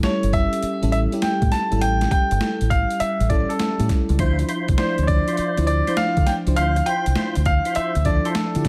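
New jack swing R&B at 101 BPM in D minor, slick and confident with swung sixteenths, where a polished, up-front baby grand piano carries the melody over a lush, dreamy FM electric piano with a soft pad layer and chorus, a round, dark fingered electric bass, and a gritty, compressed boom bap sampler-style drum kit with a thumpy kick and high-tuned snare, while a fat, lightly overdriven tonewheel organ with key click, chorus vibrato, slow rotary speaker and delay adds stabs from 4.2 s as the harmony moves from A7 to Dm9, all in a light reverb.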